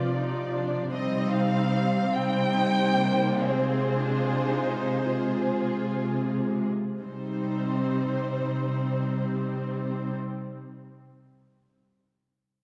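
Melancholic and solemn, this slow romantic movement for muted string orchestra unfolds in a rubato 6/8 in C minor, easing back through its opening seven seconds before settling onto a C minor chord at 7.0 seconds, a short passage cut from a longer piece. Veiled, con sordino violins carry the melody high above a second violin line, while the rich viola section sits up front with its accompaniment and the lush cellos hold a low C as the bass, every section bowed with vibrato. A wet concert hall reverb and a dark, warm production wrap the ensemble in a hushed glow.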